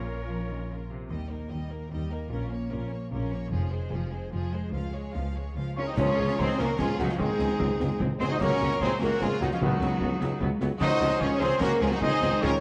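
Adventurous and swashbuckling, this heroic adventure film-score cut moves at 149 BPM in a straight 3/4, opening in Bb dorian as a clear chamber violin section carries the vibrato-rich melody over a lush studio violin section, a bright viola section, and a smooth cello and double bass foundation, with a brief solo oboe line at the very start. At 5.8 s a hollow, airy concert flute, a present French horn section and distant, roomy trumpet stabs enter, and at 6.0 s the music shifts to Db major and expands into full orchestra with a very quiet trombone section, a soft-attack tuba, dry concert snare, clash cymbals and bass drum, and timpani. The whole piece sits in a wet scoring-stage reverb, colored by a worn, warbling old cassette-tape pitch drift.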